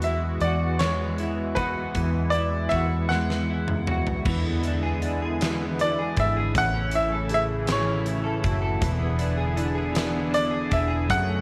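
This excerpt of a dramatic, aching pop ballad in 6/8 at 52 BPM opens on a brilliant, up-front grand piano carrying the melody over a clean, double-tracked electric guitar recorded direct, a smooth sawtooth analog pad with chorus and tremolo, a round, foam-muted fingered bass, and a huge arena drum kit with a fat snare and punchy kick. A drum fill from 3.1 to 4.3 seconds leads into the second section, where a dark, distant French horn section enters in the background with light vibrato as the chords move from Eadd9 to E7 and A. The mix sits in a light studio reverb.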